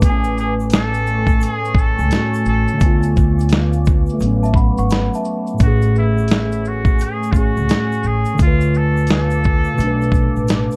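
A dreamy, nostalgic lo-fi hip hop groove in A major at 86 BPM opens with a gritty, thumpy sampler-style drum kit up front, a growly pizzicato upright bass, a mellow tine electric piano with a cassette tape colour, and a deep, moody sawtooth pad washed in chorus and reverb, with a grainy tube shaker tucked in the background. Over a swung 16th feel, a distant, nasal trumpet with a straight mute carries the jazz-style melody, breathy with light vibrato and scooped notes. A delicate, bell-like celesta line with analog delay appears briefly from 4.4 to 5.6 seconds, all within a dark, warm production.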